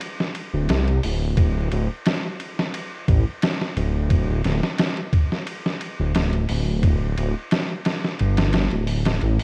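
Trip hop at 88 BPM in 4/4 with a light swing on the sixteenths, cinematic and melancholic in mood, cut from a longer piece. A gritty, pitched-down sampler-style kit plays from the start with a thumpy kick, medium-tuned snare, hi-hat and ride in a small room ambience, and at 0.5 seconds a dark detuned saw bass enters, deep and rumbling with a beating, sustained tone that sits up front between D1 and C2. The recording is dry and carries the worn character of old cassette tape, with vinyl crackle and a warbly pitch drift.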